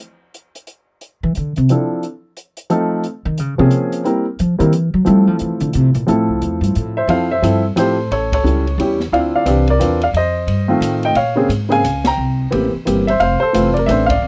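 Playful and relaxed, this dry, close-sounding jazz piano trio excerpt swings at 178 BPM in 3/4 in F major. An open drum kit with dark cymbals, a high-tuned snare and a boomy kick starts the cut, and a thumpy, gut-strung pizzicato upright bass enters up front at 1.2 seconds and solos through 7.1 seconds. A woody, short-sustain upright piano carries the melody from 1.7 seconds as the band hits accents over a Dm9, F7, Bbm9, C7, Fmaj7 progression.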